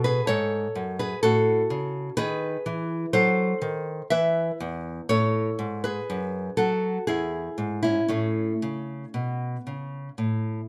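In a lilting triple metre played with free, rubato timing, this short classical excerpt has the feel of a baroque-style dance, graceful and serene. A lone nylon-string guitar carries the whole piece from 0.0 to 10.6 seconds, fingerpicked across a range from low E to the high E well up the neck. Its tone is small and warm, and it sits up front in the mix. A light reverb adds a touch of room around it. The harmony passes through a diminished chord and a minor colour before settling back onto the home chord at the close, and the passage is cut from a longer piece.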